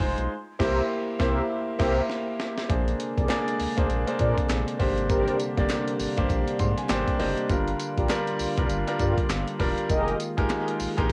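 A swung, bouncy sixteenth-note groove drives this punchy new jack swing excerpt, carried by a gritty, compressed sampler-style breakbeat kit with a thumpy kick, medium-tuned snare, hi-hat, handclaps, tambourine and crash, up front with cassette grit and the air of a small room. Beneath it a round, deep analog bass with a dark, evolving sawtooth and sine character and a touch of ring modulation holds the low end, while an intimate concert grand piano, clear and polished with audible action noise and long sustain, plays accompaniment up front through a cassette sheen. From 0.6 seconds, brassy synth stabs sit in the background, detuned and chorused with a filter sweep and tape echo. After a band accent runs through the opening section and a drum fill caps it, a mellow brass ensemble with light vibrato enters at 2.7 seconds to hold sustained chords, and a faint, crisp group handclap joins at 3.3 seconds. 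The harmony moves from C7 through Bb9, Abmaj9#11 and Gm7 to Fm11, with a piano fill in the middle and a lightly reverberant, home-cassette sound throughout.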